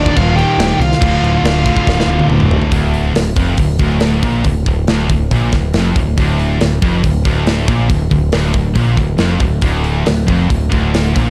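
An up-front, growling electric bass anchors this short heavy metal cut, its round, punchy tone pushed into overdrive as it holds the low end from D1 to C2. A tight acoustic drum kit enters at 0.1 seconds, sitting mid-forward with a medium-tuned snare, firm kick, crash, hi-hat and toms, its gritty, saturated sound rolled off at the top, and a fill arrives at 1.9 seconds. Three distorted guitars play the riff in the low register throughout: a bright high-gain part, a very quiet sludgy overdriven one, and a double-tracked fuzz guitar in the background. Over the opening, two high-gain lead guitars carry a melody and a second line an octave apart through digital delay, the upper one bright and the lower one dark and tucked behind, both stopping by 2.3 seconds. Set in D phrygian at 139 BPM in a straight 4/4, the harmony moves from Eb to Dm, and the dark studio production gives the whole a heavy, epic weight.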